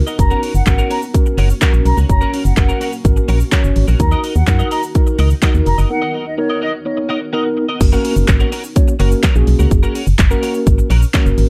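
Dance-pop in F# major at 126 BPM, summery and upbeat, cut from a longer piece with a dark, warm digital ambience. A punchy house drum kit sits up front with layered kick, snare, handclaps, hi-hat, shaker and crash, while a hollow, organ-like FM bass with a fast, decaying attack anchors the low end, both the bass and the mellow tine electric piano pumping against the kick. A brilliant, compressed twelve-string electric guitar picks a clean riff under ensemble chorus, and a granular cloud pad, blurred and detuned with a moving notch and its own reverb, drifts in the background until 7.8 seconds. An airy, distant concert flute carries the expressive melody with vibrato and digital delay from 0.2 to 6.7 seconds. The chords move from F# to D#m and then Bmaj7 for a break at 5.9 seconds before returning to F# as a new section begins at 7.8 seconds.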